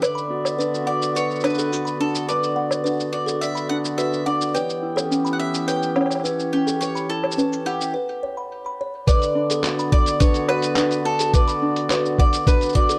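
Folktronica with an autumnal, delicate mood, cut from a longer piece: a bright, double-strung bowl-back mandolin carries the melody up front with delay, over reedy, breathing hand-pumped harmonium chords and fingerpicked ukulele arpeggios that also trail a delay. A tinkling music box joins at 0.2 seconds with a second line through digital delay, while a muffled, pitched-down, sampler-style lo-fi kit of cabasa, handclaps, hi-hat and woodblock ticks along beneath. After a break from 7.9 to 9.1 seconds, a thumpy, compressed electronic kick comes in up front, all set in a dark production with light small-room ambience.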